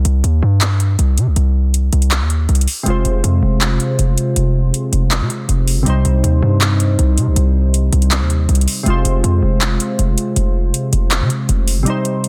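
Eerie and brooding, this half-time trap cut at 160 BPM in C minor opens on a break while a punchy, heavy 808-style bass with a noisy edge drives up front, a metallic, electronic kit of hi-hats and handclaps with a soft-clipped snare hits beside it, and glassy, wave-folded digital keys with chorus and a filter sweep enter at 2.8 seconds over a dry, dense, heavily limited mix that shifts between Cm and Fm until the kick drops out at 11.9 seconds.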